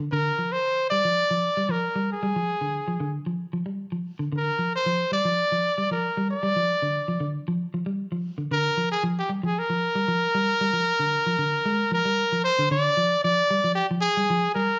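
Recorded live in one room with a moderate large-studio reverb and a softened, rolled-off top end, this short cut from a longer afrobeat piece moves at 114 BPM in a straight 4/4 with a funky, hypnotic pull in Bb mixolydian. A dark, clean electric guitar plays picked arpeggios up front, while a punchy, bright trumpet carries the solo pop-style melody with a light vibrato, sitting even more present in the mix. The harmony holds on Bb until 12.7 seconds, when it moves to a rootless Bb7 for the closing stretch.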